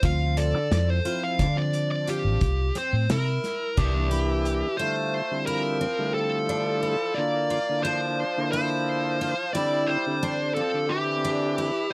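A driving 7/8 groove at 177 BPM in eighths propels this intricate progressive instrumental, with a loose indie drum kit (punchy kick, pumping room) and a dark, foam-muted fingered electric bass up front until both drop out at 4.6 s. A distorted, high-gain lead guitar carries the melody over a reedy tonewheel organ with chorus vibrato and slow rotary speaker, while a jumbo twelve-string acoustic guitar adds shimmering, octave-doubled arpeggios. From 3.8 s a nasal, distant trombone with straight mute plays a second line with vibrato, as the chords move from Dm7 and C7 to Fmaj7/D, Bb/D and Cadd9/D in a dry sound.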